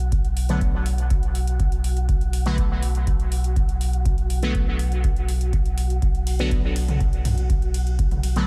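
This cavernous, meditative dub techno excerpt in B minor opens on a round, mellow sub bass sitting up front, pumping against a deep analog kick that drives a straight 4/4 at 122 BPM. Behind it, a booming analog drum machine adds metallic hi-hat and ride cymbal, while an airy, breathy noise texture, tuned and wind-like, breathes in slowly through its own reverb and pulses with the same sidechain pumping. From 0.5 seconds a juicy, detuned polysynth plays resonant stabs built from pulse and sawtooth waves with ring modulation, its filter sweep and moving notch colored by chorus, phaser and trailing dub echo. The harmony rests on a B5 chord throughout. At 6.9 seconds, layered electronic toms arrive, overdriven and re-recorded in a large room, before stopping at 8.2 seconds. The whole passage sits in a digital ambience that deepens its hollow, meditative space.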